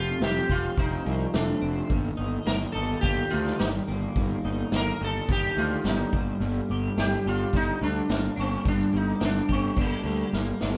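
A buzzing, shimmering sitar carries the melody up front in this kaleidoscopic, hypnotic psychedelic rock passage, cut from a longer piece and moving through F, Eb/G and Gm in a straight 4/4. A clean, compressed twelve-string electric guitar plays the riff through a rotary speaker, while a dark, round fuzz bass with overdrive sits punchy and forward. A vintage acoustic drum kit with a punchy kick, medium-tuned snare and rolled-off top joins at 0.2 seconds and closes with a fill at 10.3 seconds, all captured as a band playing live in one room with moderate studio reverb.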